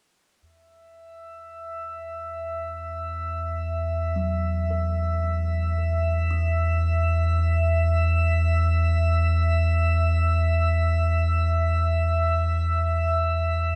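This ambient fragment, cut from a longer piece, floats in free time with a peaceful, warm mood, tuned slightly high at A4 = 443 Hz. A round, deep analog bass enters at 0.4 s, holding a dark, sustained low E2 up front with a fast attack. From 1.1 s a drifting glass-harmonics texture rises high above it, its glassy overtones swelling in slowly and hanging on long releases, shimmering with chorus and its own reverb. Between 4.2 s and 8.8 s a soft, mellow kalimba fades in behind them, its woody, hollow fingertip plucks spilling out in short arpeggios trailed by delay. The whole arrangement rests on a single Esus2 harmony, set in a vast, echoing space with a huge ambient reverb that lingers for seconds.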